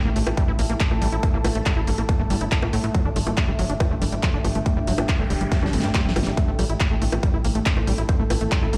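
A punchy, up-front electronic kick drives this straight 4/4 psychedelic trance cut at 140 BPM, joined by a layered big-room kit of bongos, handclaps, hi-hat and a huge snare, with a drum fill arriving at 5.5 seconds. Underneath, a tight sequencer bass built from sawtooth and square waves with ring modulation gives a driving, plucky low end, while a squelchy, gritty acid bass riff sits in the background under a long filter sweep, distortion, dub echo and sidechain pumping. An overtone-sweeping drone with moving, resonant harmonics and an ethereal, mellow pad of detuned unison voices sustain the chords from A5 to G5 and back, both washed in chorus and reverb and pumping against the kick. A very quiet electronic noise sweep enters at 5.2 seconds, and a juicy, bright blip pluck with phaser appears near the close at 7.7 seconds. The whole mix feels hypnotic and cavernous, like a big sound system in a bare room with large studio reverb.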